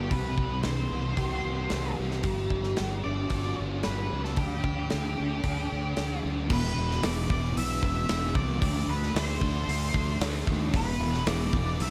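Dreamy and blissful, this short cut from a longer shoegaze and dream pop rock piece moves at 113 BPM in a straight 4/4, its opening drifting through Cmaj7, Gmaj7 and Dsus4 before a second section from 6.5 seconds alternates E5 and D5 power chords. A thick, double-tracked fuzz guitar sits up front with ensemble chorus, joined by a round, punchy overdriven fingered bass and a big acoustic rock kit of crash, hi-hat, tight kick and medium-tuned snare, its top rolled off in a big room sound. Floating further back, a dark octave-fuzz lead guitar carries the melody through digital delay, all set in a small room ambience.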